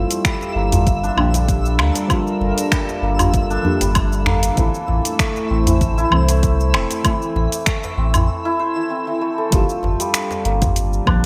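A shimmering, up-front santur plays arpeggios over a round sub bass, a mellow detuned analog pad and a dark, wave-folded chord stab with phaser and sidechain pumping, while a twinkling granular texture sparkles in the background until 8.3 s, setting the tone of a mystical, hypnotic organic downtempo excerpt at 97 BPM in G dorian that is soon joined by an overdriven electronic kick, a close, dry djembe and a lightly swung afro-pop kit of cabasa, finger snaps, metallic hi-hat and woodblock under gated reverb, the mix carrying a bright 1980s-style digital sheen with light reverb as the harmony moves from Gm7 to Am and returns to Gm7 at 9.5 s.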